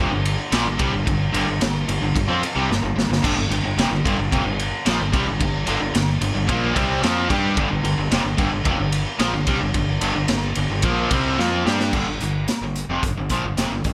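Three overdriven guitars (a bright electric, a bright hollow-body with analog chorus, and a very quiet double-tracked crunchy one) open this aggressive, driving hard rock fragment in G minor at 111 BPM alongside a punchy fuzz-drenched fingered bass, before a raw garage drum kit with a saturated, gritty sound, dark cymbals and a punchy kick enters up front at 0.3 seconds, fills at 2.7 seconds and pumps in a small room, while the crunchy guitar drops out at 11.9 seconds as the rest push on under a bright 1980s-style digital sheen with light reverb.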